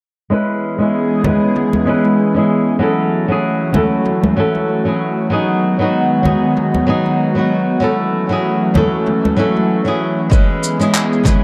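Soaked in wet spring reverb and digital ambience, this echo-heavy sunset chillout piece at 96 BPM drifts in a smooth, wistful mood as an up-front, fingerpicked flamenco guitar, shaped by a filter sweep and tape echo, moves through E6, F#m7 and G#m7 chords, joined at 0.6 seconds by an airy, breathy, warbling detuned pad with chorus and at 1.2 seconds by ringing, close and dry congas, before a deep, tape-warm electronic kick, shaker and handclaps arrive at 10.3 seconds.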